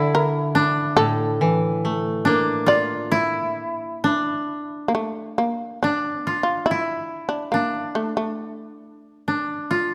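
A dark, warm recording with a moderate scoring-stage reverb carries this austere, meditative fragment of Japanese chamber music in D hirajoshi, tuned to A4 = 442 Hz and played rubato in 4/4 at around 65-73 BPM, where an up-front, buzzing, percussive fretless shamisen leads the melody over a dry, woody koto second line while a brighter low koto accompaniment sounds beneath them until 4.1 s.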